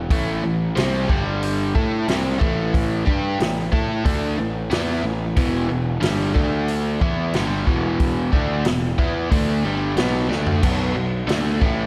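Blues rock in the power trio mold, with a strong southern rock streak, this driving, raunchy cut from a longer piece moves at 91 BPM in a straight 4/4. An overdriven electric guitar carries the riff, sitting up front with a bright, double-tracked, picked tone and a touch of slapback echo. Beneath it, a picked electric bass pushes fuzz and overdrive into a growly low end that spans E1 to A2. A vintage acoustic drum kit with a punchy kick, medium-tuned snare, hi-hat, crash and toms keeps the groove, its sound natural and rolled-off on top, and a short drum fill lands at 10.3 seconds. The riff is built on A5, G5, E5 and D5 power chords, turning to B5 at 10.6 seconds, all set in light reverb and studio ambience.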